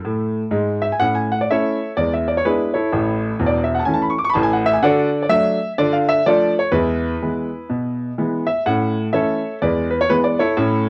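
A clear, smooth grand piano carries this swinging, exuberant stride jazz excerpt alone, opening with a brief fill before settling into a lively 126 BPM groove in A major with a swung 4/4 feel. The up-front piano has a vintage character and short sustain, ranging from deep bass notes to bright upper registers as it moves through chords like E7, D and a darker Dm before returning to A. Light reverb and the character of a home cassette recording give the short clip, cut from a longer piece, an intimate, old-time charm.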